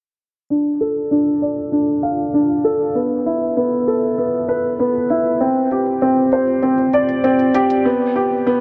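Moving and hypnotic, this short cut from a longer electronica piece settles into a straight 4/4 pulse. A felt-muted upright piano carries the riff from 0.5 seconds to 8.6 seconds, sitting up front with a soft, mellow, intimate tone and a thin felt touch, its notes trailed by delay. An electronic hi-hat keeps time very quietly underneath, its smooth, tape-warm hats sounding as if re-recorded in a large room before it drops out at 7.8 seconds. A huge ambient reverb with a long 4.8-second tail gives the whole passage a spacious haze, while a low-pass filter dulls its edges. A filter sweep runs across the entire single section, adding a shifting, trance-like colour to the piano's repeating figure.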